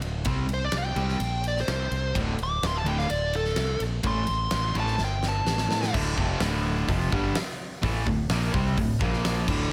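A dark, smooth lead guitar carries the melody in this heavy, driving hard rock excerpt, soloing from 0.5 seconds to 5.9 seconds with overdrive, plate reverb and digital delay. Beneath it, a growling fingered electric bass sits up front, bright and overdriven, while a huge arena drum kit with a fat snare, punchy kick, hi-hat, ride and crash fills a big room. A picked, overdriven electric guitar rings out a bright riff, while a dark, sludgy distorted guitar plays a riff further back. The harmony moves from C5 and D5 through Am, and a drum fill at 5.0 seconds leads into a new section on Dm at 5.9 seconds, where a double-tracked, high-gain distorted guitar joins the riff from the background before a closing Bb5. Light reverb ties the mix together, and the clip is cut from a longer piece.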